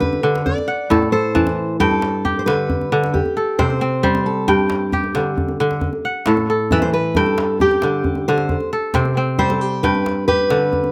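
This joyful piece of West African string and xylophone music opens with kora, fingerpicked steel-string acoustic guitar and djembe sounding together, moving at 90 BPM in a straight 12/8 in G major. The kora sits up front with crisp, ringing arpeggios spanning G2 to A5, each note trailed by a slapback echo. The dark, full-bodied dreadnought guitar carries the melody as a fingerpicked solo across the whole 10.9 seconds, staying between G4 and E5 a little beneath the kora. Underneath, the djembe lends a deep percussive pulse with a live-room character. The harmony circles through A minor, G and C, with open fifth chords on C, G and A. The dry, outdoor sound keeps this cut from a longer performance close and sunny.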